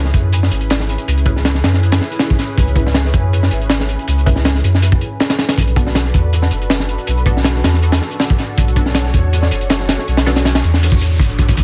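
A small-room, vinyl-crackled sound with a rolled-off top frames this dark, atmospheric drum and bass excerpt at 160 BPM, cut from a longer piece and moving from C#m7 to Bm7 at 5.6 s. A crunchy, saturated breakbeat kit sits up front with a punchy kick and high-tuned snare over a soft, round dub sub bass, while a lush, detuned sawtooth unison pad with chorus, phaser and 12-bit sampler grit holds sustained chords behind them. A very quiet, muted filtered dub chord stab with phaser enters at 1.3 s, and an electronic noise sweep appears in the background at 10.7 s.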